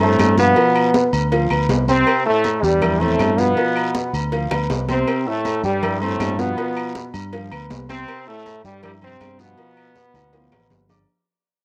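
A straight 4/4 salsa groove at 160 BPM drives this joyful, danceable C major clip, with a bright, punchy trombone section carrying the melody up front over a round fingered electric bass, a dark, boxy baby grand piano in the background, ringing high-tuned congas, metal-shell timbales with agogo bells, low-tuned bongos and cowbell, woody claves and a raspy guiro, all framed by light small-room reverb, cassette-tape character on the trombones, drum fills at 4.5 and 10.0 seconds, and a fade-out across the whole 11.1 seconds.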